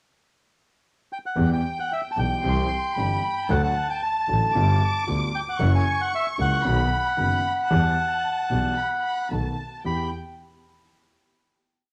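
Sultry and melancholic, this short rubato tango opens with a reedy, boxy bandoneon carrying a motif-based melody up front from 1.1 s, joined at 1.4 s by a lush, bowed violin section playing a smooth counter-melody above it. Beneath them, an intimate, vintage grand piano with audible action noise and deep bass sets a milonga rhythm, and a focused, close double bass, bowed with vibrato by a single player, follows the same milonga rhythm. The bandoneon, strings and piano carry a cassette-tape colour and plate reverb within a moderate studio room, and the piece settles on its final chord at 9.8 s.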